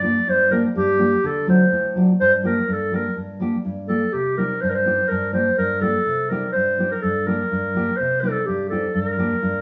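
A distant, roomy clarinet in classical style and a dark, full-bodied nylon-string guitar, thumb-plucked with audible finger squeak, open this restless, bittersweet Balkan folk excerpt at 124 BPM in 2/4 with swung 16ths in G harmonic minor, the guitar accompanying while the up-front clarinet carries the melody and takes a solo from 3.2 s over chords moving among G minor, D and C minor, the two players heard live together in one room with a wet studio reverb.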